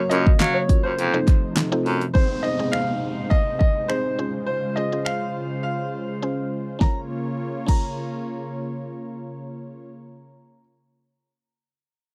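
Dance-pop in Bb minor at 103 BPM, confident and bittersweet, this short excerpt opens with a clear grand piano melody over a smooth, detuned sawtooth pad and a woody, mallet-like FM pluck, both chorused and pumping with the sidechain, while a punchy pop drum kit with fat snare, finger snaps and handclaps sits up front and a faint group handclap adds crisp live-room texture. A breathy, whispered baritone saxophone carries the bass with vibrato only until 2.0 seconds, after which an electronic downlifter sweeps beneath the chords moving from Ab to Dbmaj7, with a break at 5.6 seconds. The drums stop at 7.9 seconds, leaving piano, pad and pluck to settle on Bb minor in a dry, close 1970s-style studio sound, the piano echoing through tape delay.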